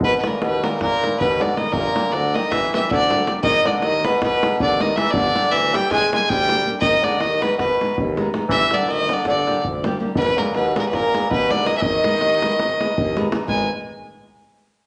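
Balkan folk in the wedding-band style, this fiery, virtuosic excerpt moves in a straight 9/8 and gathers speed throughout, rocking between Ab minor and G minor chords. A bright, nasal, earthy fiddle carries the melody up front with bowed lines, while a distant, roomy bassoon with vibrato sings a second line, a clear, soft-attacked tuba holds the bass in the background, and a deep, close, dry davul drives the percussion. A fingerpicked flamenco guitar enters at 0.2 seconds with warm acoustic accompaniment and audible finger squeak, all set in the wet reverb of a large studio.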